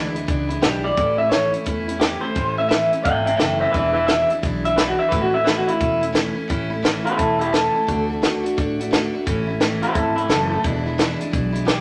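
Soaked in a large, wet studio reverb, this short rollicking rockabilly excerpt swings along on a chord cycle moving between E7, A and D. A full-bodied dreadnought acoustic guitar with audible finger squeak and a woody, thumpy gut-string upright bass played pizzicato start together. A compact cocktail kit joins at 0.2 seconds with a high-tuned snare, tight kick and hi-hat sitting up front. At 0.6 seconds a twangy, slightly broken-up electric guitar through a small old amp takes the melody, riding prominently over the upbeat groove.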